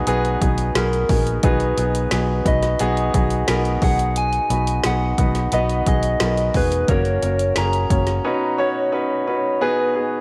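Bathed in a moderate echo-chamber reverb, this hopeful piano-driven pop piece sets a polished, present grand piano under a gentle, warbling FM synth lead with chorus and vibrato, while a foam-muted, amped fingered electric bass and a deep house drum kit with a punchy kick, woody snare and dark hats play up front until 8.2 seconds, leaving piano and synth to carry the close.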